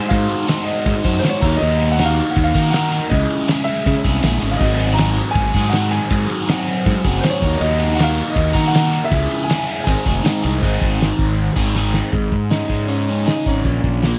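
Driving straight 4/4 indie rock with a carefree, upbeat lilt, cut from a longer piece: a cloth-damped drum kit thuds along with a fat snare, tight kick and dark, muffled cymbals, while a fuzzed, round fingered electric bass sits up front. A crunchy, double-tracked overdriven guitar plays the riff through a phaser as a woody upright piano, its action noise audible, carries the melody with a slapback echo. The dry, close sound recalls a 1970s studio, with a drum fill at 11.8 seconds leading into a closing passage on suspended and minor chords.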